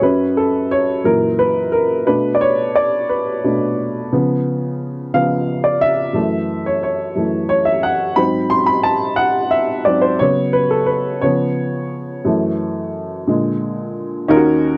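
A solemn, fervent gospel excerpt in F# minor, played by a lone upright piano at a slow 59 beats per minute in a straight 6/8. The woody, up-front piano carries the whole 14.8 seconds, moving through rich chords such as F#7, Bm7, a G#7alt and a suspended C#7 that resolves before closing on A#7. The sound is dry and close, with the intimate feel of a 1970s studio recording.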